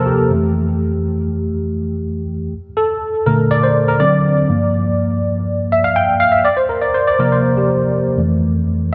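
Glossy and urban, this short excerpt of pop at 122 BPM in F major features a lone tine electric piano, worn and slightly out of tune yet clean, sitting up front as if heard through built-in speakers, with analog chorus and tape echo in a light reverb. Over its 8.9 seconds the piano moves through Fmaj9, Bbmaj7, D7, Gm7 and C7sus4 before settling on Fmaj7, spanning F2 to G5.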